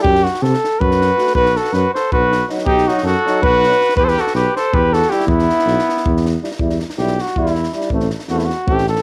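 An up-front flugelhorn carries the melody of this fiery, restless Balkan brass band fragment in 7/8 at 320 BPM in E harmonic minor, joined from 0.8 s to 6.4 s by a warm trumpet second line before taking a solo at 6.6 s, while a prominent tuba with light vibrato and a smooth top anchors the bass, a bright trombone and mellow euphonium sit distant and roomy in the background, and a compact, dry cocktail drum kit with a punchy kick and high-tuned snare drives it all through a small echo-chamber ambience.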